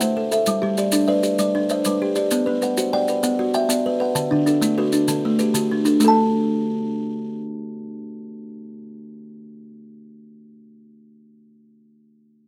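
Close, detailed microphones and a light reverb frame this short, hypnotic cut from a longer piece of southern African traditional music, an mbira-style interlocking cycle in 12/8 at 130 BPM with a straight feel, tuned to A4 = 444 Hz. Two kalimbas spin arpeggios together across the whole excerpt: one is buzzing, ringing and up front, plucked with a thumbnail on a solid board, while the other is soft, mellow and hollow-bodied, plucked with a fingertip. Grainy, close maracas add percussion until 6.1 s, as the trance-like cycle moves through G, B minor and D before the chords drop away at 6.0 s.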